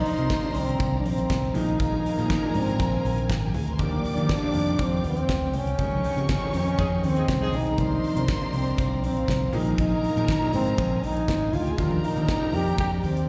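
Heard through a venue's PA in a live hall with a light reverb, this danceable, driving disco excerpt puts a breathy, close-miked trombone up front on the melody, with light vibrato and a soft attack, over a damped 70s drum kit with a fat snare and tight kick and a round, punchy fingered electric bass. Dark, woody studio strings carry a lush second line and sustained background chords, while a clear but boxy grand piano adds short-sustained accompaniment and very quiet, bright congas sit underneath. A mellow, distant horn section lands tight stabs at 6.8 seconds, inside a band accent from 5.8 to 7.8 seconds, as the minor eleventh chord cycle moves through a suspended seventh and lush major ninths.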